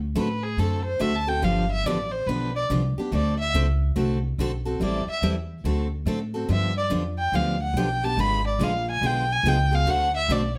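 Swinging and charming, this brief cut from a longer jazz manouche piece moves at 142 BPM in 4/4 with a lilting swing, as a bowed violin with a nasal, vibrato-laced tone carries the solo melody in plate reverb over a woody, thumpy pizzicato upright bass on gut strings and a bright, full-bodied picked steel-string acoustic guitar whose fresh strings let a little finger squeak through, all set up front in a moderate studio room as the harmony runs from D7 through G7, Am7 and a G#dim7 before settling back on D7 at 9.9 seconds.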